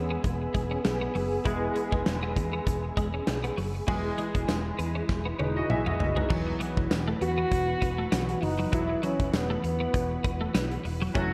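A distant, roomy French horn with light vibrato carries a classical-style melody over this nostalgic yet urgent slice of 1980s-style pop at 99 BPM, falling silent between 3.2 and 7.2 seconds before returning. Underneath, a clear, polished concert grand piano with analog chorus, a warbling sawtooth string machine voicing cellos in slow-attack sustained chords, and a compressed, clean twelve-string electric guitar riff with ensemble chorus and tape echo fill out the harmony. A round, foam-muted fingered electric bass and an up-front big rock drum kit with a punchy kick drive the swung sixteenths, and a drum fill at 5.1 seconds leads into the shift from E to Esus2, all washed in a dreamy, reverb-soaked plate mix.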